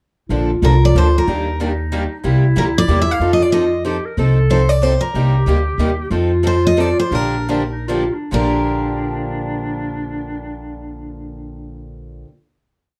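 Dark, club-style reverb gives this short, complete piece of gypsy-jazz string swing a roomy, intimate sound. A bright, full-bodied steel-string guitar sits up front with the tune, played as a motif-based melody in tidy question-and-answer phrases and lifted by a touch of plate reverb. A distant clarinet adds a clear, vibrato-laden counter-melody in jazz style, with scooped notes. Beneath them, a boxy parlour guitar with fresh strings picks out every beat of the waltz-time swing, short and accented on two and three, with audible finger squeak. A second, softer rhythm guitar stays in the background. The woody, thumpy upright bass on gut strings plays roots and fifths with walk-ups, and the playful, swinging groove slows from 6.1 seconds before resting on a final chord at 8.3 seconds.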